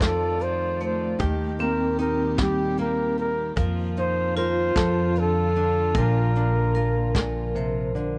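A dry, close recording with a small-room ambience and a 1970s studio character frames this short cut from a longer acoustic folk-pop ballad in Bb major, moving at a slow 50 BPM in a straight 6/8. The mood is tender and intimate. Up front, a breathy, mellow flugelhorn carries the melody in a jazz style with light vibrato and a soft attack, stopping at 7.6 seconds. Beneath it, a bright nylon-string guitar is fingerpicked in a classical manner, a vibraphone played with hard mallets rings out metallic arpeggios with fast motor vibrato, and a dark chamber string section holds bowed, sul tasto chords. The groove comes from a woody pizzicato upright bass on steel strings and a vintage brush kit with a tight kick, a medium-tuned snare and hi-hat, its rolled-off top sitting forward in the mix. The harmony moves from F7 through Eb and F7sus4 to F6 before settling on Bb at 6.0 seconds.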